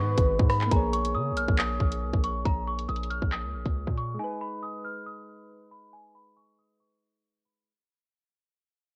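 Half-time drill hip hop at 138 BPM in Bb phrygian, this ominous, cold cut from a longer piece sets a bell-like celesta melody over gentle, mellow electric-piano-like keys, with a velvety synth lead and a warbling tape pad heard only in the opening 0.7 seconds, while a punchy, heavy 808 bass and an up-front drill kit of hard-clipped kick, bright hats, handclaps and rim clicks drive until about 4.2 seconds, all colored by cassette lo-fi haze, a filter sweep and a fade-out.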